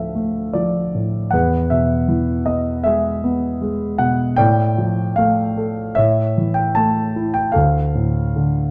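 Melancholic and dark, this brief classical passage is a lyrical solo piano piece, cut from a longer work and played with a free, rubato feel in 4/4. A concert grand carries everything from 0.0 to 8.7 s, reaching from a deep bass register around D2 up to A5. Its tone is mellow and shadowed, set up front in the mix with a light touch of reverb around it. The harmony moves from D minor through E and D minor over A, settling on A before returning to D minor at 7.6 s. The production leans dark and warm, giving the fragment a somber weight.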